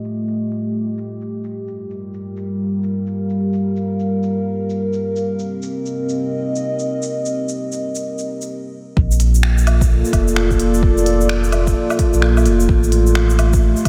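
Melancholic and ghostly, this future garage excerpt opens on a dark, detuned analog pad of sustained chords under a filter sweep, its sidechain pumping set beside a soft, overdriven kit of finger snaps, smooth hi-hats, shaker and woodblock that sounds re-recorded in a large room. After a brief stop at 8.5 seconds, a deep overdriven kick and a round sine sub bass, also pumping, arrive at 9.0 seconds to anchor the swung groove. The whole dreamy mix is soaked in a huge ambient reverb and softened by a low-pass filter.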